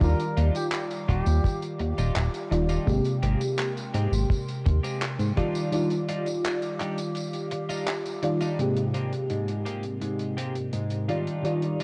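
A brief flugelhorn phrase with vibrato and tape echo opens this woozy, faded vaporwave excerpt at 84 BPM in Eb major, over a round, chorused FM electric piano, a bright, twangy twelve-string electric guitar riff, an up-front glossy synth bass with tube saturation, a dark, dry reggae drum kit of handclaps, hi-hat and tambourine in gated reverb, and a tight kick; a lo-fi, warbling pad drifts in the background from 0.5 s, the bass and kick drop away before a break at 5.7 s, and a filter sweep on the clean guitar colours the closing stretch from 8.6 s, the whole recording carrying a cassette-tape character with light studio reverb over Ebmaj9 and Abmaj9 chords.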